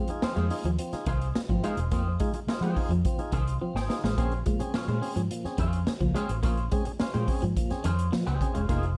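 A slightly broken-up, twangy electric guitar riff and lightly overdriven tonewheel organ stabs with vibrato open this hypnotic, driving funk groove in Bb dorian at 106 BPM, joined by a round, punchy, foam-muted fingered electric bass and an up-front big-band drum kit with a boomy kick that plays a fill at 3.6 seconds, while a clean, compressed envelope-filtered guitar with analog chorus adds accompaniment over Fm7 moving to Bbm9 at 4.2 seconds, all set in a dark production with light reverb.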